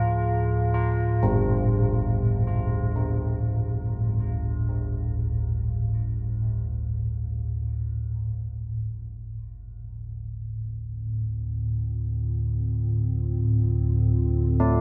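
Ominous and unsettling, this dark ambient drone piece is a fragment cut from a longer work. A deep, rumbling drone sits up front throughout, its detuned triangle and sawtooth tones swelling in slowly and sustaining, colored by a phaser and its own built-in reverb. Over it, carillon bells ring out bronze, iron-struck arpeggios, also up front, their minor-third overtones trailing into tape echo. At 11.6 seconds a moody analog pad fades in with sustained chords, its wave-folded square and sawtooth layers thickened by a sub octave and softened by chorus. A light reverb surrounds the whole, giving the bells and drone a shadowy, suspended space.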